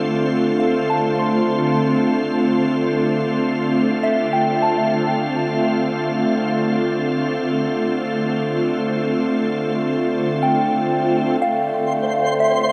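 Drenched in a huge, dark reverb, this melancholic, spacious ambient piece in 3/4 rests on a Dm9 chord held by an up-front, organ-like pad with ensemble chorus over a reedy, breathing pedal harmonium drone, while a soft synth bell plays mellow arpeggios through chorus, phaser and diffuse delay from 0.6 s, and a twinkling granular texture with octave-up shimmer enters at 11.8 s.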